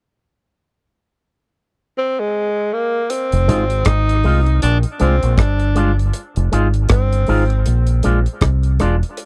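Dub reggae with a deep, meditative mood, heard in a short cut from a longer piece with a dry, close studio sound in a 1970s style. A breathy tenor saxophone carries the melody from 2.0 seconds, its whispered, intimate tone marked by vibrato, scooped notes and a soft attack, with dub echo trailing its lines. At 3.1 seconds a damped 70s drum kit comes in with hi-hat, a tight kick and rim clicks, sounding dark and smooth with a rolled-off top, and the chords move between Fm7 and Bb7 from that point. A deep, round fingered electric bass sits up front beneath it, direct and amped, while a bright, twangy electric guitar with an envelope filter adds clean, picked accompaniment carrying dub echo. The swung sixteenth-note feel gives the groove a relaxed, unhurried sway.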